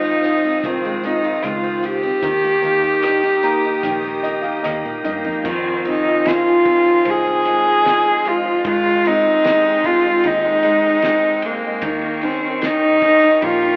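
An intimate, up-front solo cello carries the melody with light vibrato and an airy sul tasto bow in this nostalgic, hopeful acoustic folk-pop ballad excerpt, backed by a woody upright piano with audible action noise, bright picked steel-string guitar arpeggios with finger squeak, a very quiet chamber string section holding sustained chords, a dark, foam-muted vintage electric bass, and a muffled, gritty cloth-damped drum kit, all set in a moderate recital-hall reverb with a telephone-like sound.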